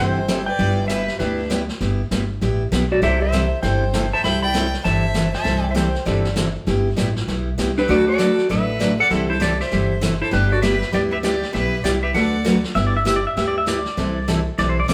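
Country western swing at a brisk 197 BPM in G major, swinging and down-home, with a clean lap steel guitar carrying the melody in gliding slide lines and volume swells while a clear, focused bowed fiddle with light vibrato adds a second line until 12.6 seconds. Underneath, a bright, full-bodied dreadnought acoustic guitar picks the accompaniment with audible finger squeak, a woody, growly upright bass holds the low end up front, and a jazz kit played with brushes, its top rolled off, sits mid-forward. At 12.8 seconds a compressed, fingerpicked pedal steel guitar takes a short solo, the whole band heard live in a moderate stone room.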